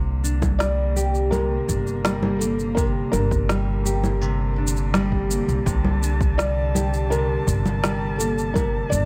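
A straight 4/4 pulse at 83 BPM sets an unhurried pace for this delicate, wistful folktronica excerpt, which is cut from a longer piece and rests on a Csus2 chord. Overdriven electronic percussion drives the beat: shaker, congas and a woody snare arrive at 0.2 seconds, joined at 0.4 seconds by a deep, produced kick drum, both carrying studio ambience. Underneath, a thumpy upright bass plucked on steel strings sits dark and up front, while a fingerpicked nylon-string guitar with fresh strings spins arpeggios through a delay. A string quartet, one player per line, holds sustained bowed chords with expressive vibrato and portamento, giving a rich chamber colour. At 0.6 seconds a felt-muted upright piano takes the melody, mellow and intimate, its thick felt and audible action noise roughened by vintage 12-bit sampler grit and trailed by delay, all set in a small room reverb.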